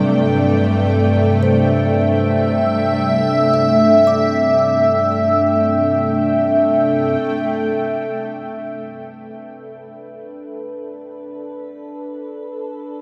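A morphing, detuned wavetable pad opens this weightless, luminous ambient excerpt on a Csus2 chord over G, joined at once by a very quiet, woody kalimba picking out arpeggios and a tense, string-like sawtooth drone with vibrato and a bright edge. The pad sits up front, colored by chorus and shimmer reverb. It moves to Bm7 at 7.2 seconds, and the drone drops out at 7.3 seconds and the hollow, ringing kalimba at 8.5, leaving the pad alone inside a huge, dark reverb.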